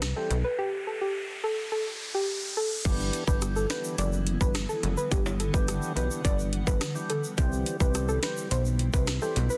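A straight, bouncy dancehall groove in four, taken from a longer piece, opens with a tight kick, a sharp overdriven snare with soft clipping, metallic hats, rim clicks, finger snaps and crash, all up front beside a punchy, funky analog bass with a plucked sawtooth bite. From 0.2 seconds a gentle, round pluck carries the melody, dark in tone and dressed in chorus and tape echo, while a percussive tonewheel organ with key click and a slow rotary speaker fills in the accompaniment. The drums fall silent at 0.6 seconds while an electronic riser builds, then return at 2.9 seconds, where a compressed, saturated tube shaker and timbales join with soft hands. From 3.8 seconds a cloudy, blurred granular pad with a detuned unison sheen and built-in reverb sits in the background, pumping with a sidechain. The mood is sunny and bouncy, and the mix has a light reverb and a dense, heavily limited modern master.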